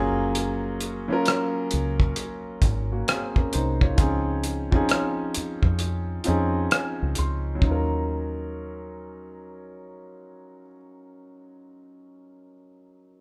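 R&B with a neo-soul lean, this short cut from a longer piece carries a sultry, late-night mood over a slow, swung groove in four. A clear concert grand piano sits up front with deep low end, laying down lush extended chords that move from Gbmaj9 to Dbmaj9 before settling on Ebm9 as the second section arrives around 7.6 seconds. Underneath, a fingered electric bass gives a dark, round, punchy foundation, foam-muted and dub-deep. The cloth-damped drum kit sounds thuddy and close, with a tight kick, hi-hat and rim click under a rolled-off top. Between 5.8 and 7.6 seconds the kick drops out while the piano plays a fill, and the drums fall silent shortly after, leaving piano and bass to carry on in a room with light reverb and a live-band feel.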